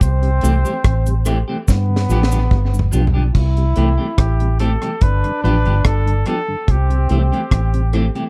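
Sunny and laid-back, this roots reggae excerpt sets a clear flugelhorn melody over a brilliant, distant trombone second line, both carrying tape echo. Beneath them sit a round, foam-muted electric bass and a deep, dry drum kit with a high-tuned snare and tight kick, both up front, with a drum fill from 1.7 to 3.3 seconds. A compressed cabasa plays until 3.1 seconds, a twangy clean electric guitar adds accompaniment, and a mellow tonewheel organ with slow rotary speaker murmurs in the background, all in a close 1970s-style studio sound.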